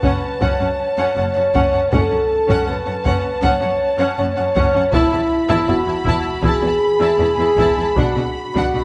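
At 80 BPM in 4/4, a band-limited taiko ensemble struck with heavy sticks drives this dark, epic cinematic orchestral cue in F# minor, where mellow French horns sit up front holding sustained chords over lush bowed strings: violins carry a smooth vibrato melody and a second line, focused violas add accompaniment, and rich cellos with woody double basses anchor the bass in the background, the harmony moving from F#m to Esus4 and Bm inside a moderate scoring-stage reverb across this 8.8-second cut from a longer piece.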